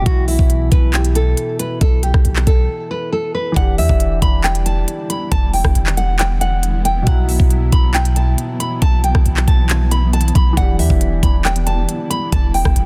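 A dense, heavily limited modern mix with little reverb frames this brooding, eerie stretch of half-time trap in E minor at 137 BPM, cut from a longer piece and moving between Bsus4 and Em7. A full-bodied, fingerpicked nylon-string guitar carries the melody through a low-pass filter and delay over a worn, dark grand piano, while a boomy sine 808 bass with a fast attack and an up-front electronic kit of knocking kick, crisp hi-hat, handclaps and rim click anchor the low end, with a break at 2.7 seconds. From 4.6 seconds a detuned granular cloud pad sits in the background, blurred and evolving under its own reverb.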